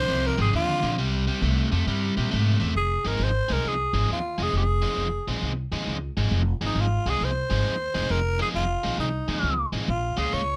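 Soulful and mournful, this short cut from a longer electric blues shuffle in F minor swings along at 135 BPM, with a raspy, growling tenor saxophone soloing up front with scooped notes and light vibrato from 0.0 to 2.8 seconds. It carries the melody over a biting, overdriven picked guitar riff and a woody, thumpy pizzicato upright bass, all in a dry, close sound as the harmony moves from F7 through C5 to Fm7 at 2.8 seconds and on to Bbm7 at 9.9 seconds.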